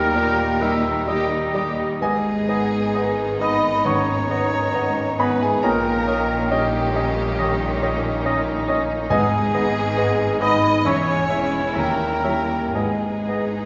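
Unhurried and elastic, this classical excerpt moves at about 67 BPM in 4/4 with rubato and uneven beats, its tragic, passionate mood set in G# minor. A clear concert grand piano sits up front carrying the melody with deep bass and long sustain, joined on the melody by a rich, expressive violin section in the background, while a second violin section, a hollow silver flute, a mellow, distant clarinet and a solo oboe with smooth-topped vibrato weave second lines around it. Beneath them a very quiet, distant viola section and a mellow bassoon supply accompaniment, a tight French horn section holds sustained chords, and a lush cello section with portamento joins a focused double bass section on the bass. Timpani struck with hard mallets on calf heads enter briefly at 9.1 seconds, just as the harmony returns to G# minor. The progression leans on D#7 and a closing D#7b9 before resolving home, all set in a wet concert hall reverb with a two-second tail.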